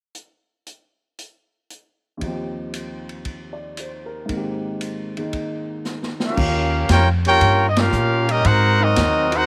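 Big band swing in Eb major at 116 BPM, this brassy, swinging fragment opens with the drum kit alone before a clear upright piano enters at 2.2 seconds with rich extended chords. At 6.2 seconds a trumpet section takes the melody up front with light vibrato and a soft attack, backed by a warm trombone section in the background, and a dark, woody pizzicato upright bass joins beneath them at 6.4 seconds. A drum fill leads into this last stretch, and the band hits an accent at 7.7 seconds over a punchy kick, all set in a natural studio room with light reverb.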